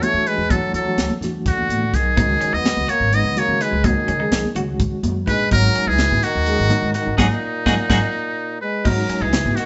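Slick and funky, this electric jazz fusion excerpt moves in a brisk 7/8 at 251 BPM (eighths) in G# minor. A buzzy, brilliant muted trumpet carries the melody up front with light vibrato and scooped notes, shadowed by a breathy, whispered trombone, while a reedy electric piano with fast tremolo, a woody pizzicato upright bass and softly played, ringing congas fill out the groove. A tight, dry funk kit with a high-tuned snare drives things along, a twangy clean electric guitar slips in with background stabs at 2.2 seconds, and a band accent from 7.2 seconds, with a drum fill beneath it from 7.4 seconds, crowns the passage in a moderate stone-room ambience.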